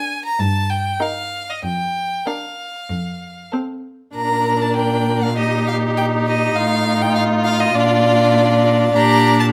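Played in four with uneven, rubato beats, this quick classical-period excerpt for string quartet feels lively and cheerful. The first violin and cello sound clear and up front: the violin carries a smooth, vibrato-laden melody and the cello enters at 0.4 s with an even bass line. The second violin, set at a distance, and the close viola add rich bowed inner lines beneath, all under a light reverb.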